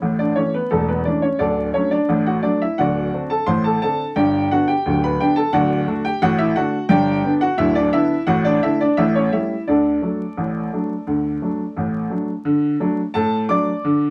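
A clear, woody upright piano with long sustain plays solo and up front in this playful, jaunty ragtime fragment at 87 BPM in 2/4 with a straight feel, spanning D1 to D6 in D major tuned to A4 = 438 Hz as it moves through A, D, D7, G and A7 before turning to a new section at 12.5 seconds, all set in light reverb within a dark, warm production flecked with vinyl crackle.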